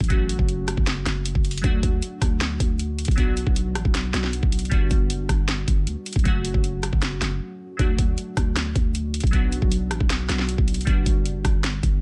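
All three parts are heard from the opening: glassy, detuned digital keys with chorus, a growling 808-style bass, and a knocking trap drum kit. This dreamy, wistful trap cut runs at 156 BPM in 4/4 with a half-time feel, in D major, and is taken from a longer piece. The keys sit in a middle register with a sub octave and a filter sweep, their fast attack decaying under the drums, while the buzzy bass holds the low end from F#1 to D2. Up front in the mix, the kit layers a sharp snare, metallic hi-hats, rim clicks and finger snaps over the kick. The chords cycle twice through F#m, D, Bm and Gmaj7, and a short break at 7.4 seconds sets up the repeat at 7.8 seconds. The sound is dry, with little reverb, and carries some lossy compression artefacts.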